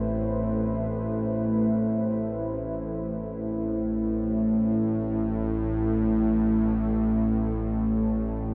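Dark ambient drone in free time, this cavernous, ominous passage is cut from a longer piece and runs 8.5 seconds. A bowed-like drone sits low and up front, its string-like, tense tone carrying vibrato and a bright sawtooth edge over a noise layer, while a filter sweep moves across it. Above it, a deep dark ambient pad holds sustained chords on A minor, full-bodied and mellow, with detuned unison layers, a sub octave and chorus giving it a moody depth as it fades out. Both parts swell in slowly and ring on with long releases. A huge, wet reverb with a 7.4-second tail wraps the whole in a dark, enveloping space.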